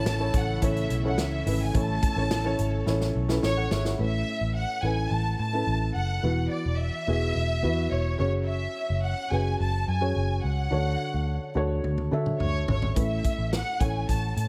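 Light reverb and a small-room ambience frame this uplifting, warm piano-driven pop excerpt, where a lush, vibrato-rich violin section sings the melody over a mellow, felt-muted upright piano with audible action noise and a dark, round, foam-muted electric bass up front, while a faint, breathy, warbling pad hovers until 4.0 s and a natural country drum kit with a punchy kick plays fills, falls silent at 4.0 s and returns at 11.8 s.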